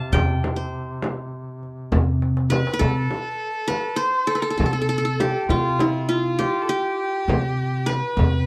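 A small room with moderate reverb frames this short cut from a longer Turkish makam ensemble piece, and the mood is warm and festive over a straight 9/8 metre. Up front, the plucked qanun carries the melody with a bright-edged, triple-string tone, joined by a woody pizzicato upright bass on steel strings. A mellow duduk holds a low drone with vibrato and scooped notes in a folk style, then drops away at 2.9 s. The darbuka's clay shell and natural skin sound deep, compressed and saturated under soft hands, and it plays a fill from 2.2 s before falling silent, returning only for a final stroke near the close. A large, vintage-sounding frame drum with a band-limited thud runs underneath throughout. From 2.5 s a single dark, bowed violin adds a second line with a soft attack, vibrato and portamento, its smooth, expressive tone trailed by tape echo.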